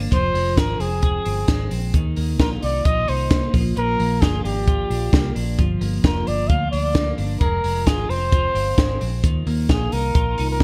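Jangly indie pop with a nostalgic, breezy mood, this short excerpt moves in a straight 4/4 through Fm, Ebsus2, Bb and Gm7, with a bright, twangy twelve-string electric guitar picking clean, compressed arpeggios under subtle chorus and digital delay. A round, foam-muted vintage fingered electric bass anchors the low end while a compact cocktail drum kit of hi-hat, tight kick and high-tuned snare sits up front with a dark, rolled-off top and gated reverb. From 0.1 seconds a breathy, whispered trumpet carries the melody with vibrato, scooped notes and a soft attack, intimate and touched with digital delay, all within a light reverb.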